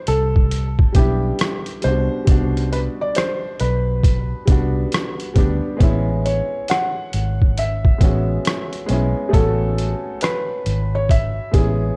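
A dark, dry production frames this 12-second cut from a longer lo-fi hip hop piece, nostalgic and mellow at a slow 68 BPM in A major with a swung sixteenth-note feel. A felt-muted upright piano carries the melody with a soft, boxy tone, audible action noise and an analog delay, over a second upright piano whose woody, short-sustained chords move from Cmaj9 to Amaj9 at 5.8 seconds. Up front sit a round, foam-muted electric bass and a gritty, pitched-down sampler-style drum kit with a thumpy kick, hi-hat and rim click, compressed and re-recorded in a large room.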